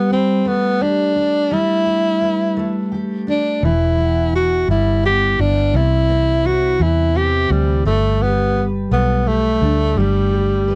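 Pop piece in a slow 6/8, heartfelt and romantic, cut from a longer piece, with a clear, up-front tenor saxophone singing the melody in a jazz style, shaped by a soft attack, subtone, vibrato and scooped notes. A double-tracked, fingerpicked steel-string acoustic guitar with fresh strings gives full-bodied support through Gadd9, Em and C chords. At 3.6 seconds a vintage foam-muted electric bass enters, dark, round and punchy, all within a dry, close 1970s-style studio sound touched by light reverb.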